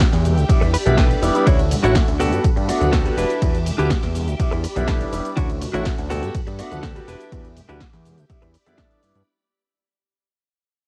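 Cut from a longer piece, this sunny, funky filtered disco house groove at 123 BPM opens straight into a drop. A punchy, tape-saturated electronic kick and a fat, detuned analog bass sit up front. An analog drum machine adds hi-hat, ride cymbal, shaker and a punchy snare. Distant, ringing tube shaker and congas sound very quietly. A brilliant concert grand piano plays accompaniment through phaser and pumping. A swirling, phased string machine holds sustained chords in the background. A clean, direct-recorded electric guitar plays a scooped riff and adds a fill from 0.5 to 1.5 seconds. The harmony cycles through A9sus4, Dmaj9, Gmaj9 and Em7, and a fade-out runs from 1.5 seconds to the end at 9.3 seconds.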